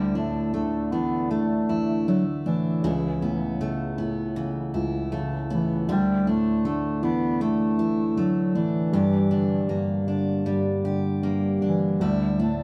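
A straight 4/4 pulse at 79 BPM carries this tender, heartfelt pop ballad excerpt, where a dark, up-front bass clarinet sings the melody in a jazz style with vibrato, scooped notes and a smooth top, over a woody, up-front upright piano accompaniment and full-bodied dreadnought steel-string acoustic guitar arpeggios, the trio heard playing live in one room with wet reverb as the chords move from Dsus2 through Aadd9/C# and Gm and back to Dsus2 across 12.6 seconds.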